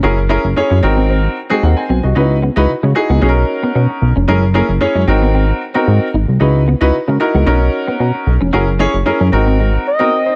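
Funk at 113 BPM in 4/4 with a straight feel, this slick, danceable cut from a longer piece moves through a cycle of F#7, G#9, C#m11 and Bmaj7 chords that repeats across its brief span. A glossy, retro synth bass sits up front, its pulse-wave and sawtooth tones shaped by pulse-width modulation, ring modulation and a filter pluck, with a fast attack, a mellow sustain and a chorus effect. A clear baby grand piano carries the accompaniment, its worn, open sound ringing with long sustain near the front of the mix. Behind them, a clean, compressed electric guitar plays a fingered riff through an ensemble chorus. Just at 9.9 s, an expressive synth lead enters on a single D#5, a smooth, dark blend of sawtooth and triangle with vibrato and chorus. Digital ambience surrounds the whole arrangement.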